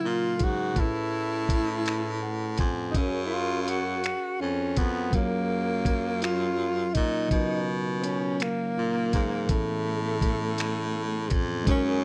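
A breathy, whispered tenor saxophone carries the melody up front with a soft attack and jazz vibrato in this tender, sensual slow R&B excerpt in 6/8 at 55 BPM, cut from a longer piece. An overdriven tine electric piano, gritty through a combo amp with subtle chorus, moves through Bmaj9#11, Amaj9 and F#maj9 and adds a fill at 1.9 seconds. Meanwhile a bright, punchy baritone saxophone holds the bass, and a dusty, compressed sampler-style soul kit of finger snaps, hi-hat and thumpy kick, re-recorded in a large room, sits up front. A very quiet vintage horn section with octave doubling lands a brief stab at 11.7 seconds, inside a dry, close 1970s-style studio sound.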